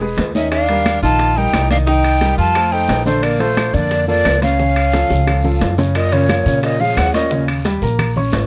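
Piano, upright bass, bongos and congas open this lively, danceable Afro-Cuban jazz excerpt at 177 BPM in a straight 4/4, with guiro, maracas and timbales joining a moment later and claves soon after. The upright bass sits up front, plucked pizzicato with a dark, thumpy, woody tone on steel strings, while the intimate baby grand piano comps with short sustain and audible action noise. At 0.4 seconds a breathy, mellow flute takes the melody close-miked and up front in a straight, tongued and slightly unsteady tone, and a clear tenor saxophone carries a second line with vibrato and subtone. The background percussion blends tight, hard-handed bongos, damped, soft-handed congas, raspy guiro, grainy maracas and woody claves, with ringing metal-shell timbales heard in a live room. A drum fill at 5.1 seconds leads into a new section as the harmony moves from lush major-ninth and seventh chords toward F#maj7 and D#7, all set in light reverb with close, detailed microphones.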